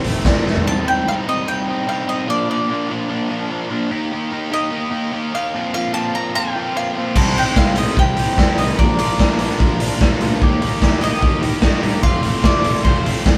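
A straight four-beat pulse opens this restless, bittersweet indie rock piece, cut from a longer song, with a raw garage drum kit firing off a fill at 0.5 seconds before dropping away. From 0.7 seconds the mandolin carries the melody, its woody double strings picked and trailed by tape echo, while an up-front, double-tracked fuzz guitar grinds out a compressed, distorted riff throughout. At 7.2 seconds the full band returns: the drums sit close with a punchy kick, gritty saturation and a rolled-off top, and a growly fingered electric bass thickens the low end with overdrive from further back. A glockenspiel struck with rubber mallets adds a mellow, bell-like second line from the background. The whole ensemble sounds like a band playing live in one room, touched by light reverb, as the chords move from C minor through B-flat and E-flat to F.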